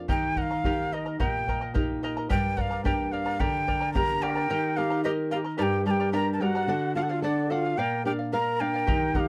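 Festive yet wistful, this short Andean folk passage in G minor moves at 109 BPM in a straight 2/4, with fingerpicked nylon-string guitar up front and the shimmering double strings of a charango carrying the accompaniment through chords of Eb, Gm, D and Bb. A breathy, expressive large quena leads the melody with crisp, chiffy attacks and vibrato, while a deep, dark bombo sounds from a distance until 4.4 seconds and returns at 8.9 seconds. A second, reedy large quena enters at 3.9 seconds with a soft, airy second line set further back, all captured in a dry, close 1970s-style studio sound with light reverb.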